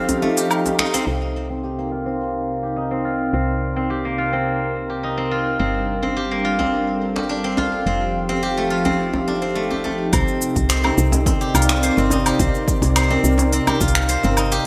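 Hypnotic and warm, this organic downtempo piece moves at 106 BPM in 4/4 with a straight feel, set in C dorian and cut from a longer piece. A mellow duduk is barely audible at the very start, as a detuned sawtooth analog pad holds smooth, sustained chords with chorus and sidechain pumping beneath an up-front steel-string zither whose silvery, ringing fingerpicked arpeggios pass through a low-pass filter and digital delay, with a filter sweep on the zither from 1.1 to 10.1 seconds. After a brief opening break, a woody, round FM bass with tube saturation enters at 1.1 seconds, and the chords move from F7 through Cm7, Gm7 and back. A deep, hard-handed djembe sits in the background, and a deep house drum kit of cabasa, finger snaps, smooth hi-hat and woodblock with gated reverb returns at 10.1 seconds alongside a punchy, layered electronic kick. The whole sits in a lush hall reverb with a bright 1980s-style digital sheen.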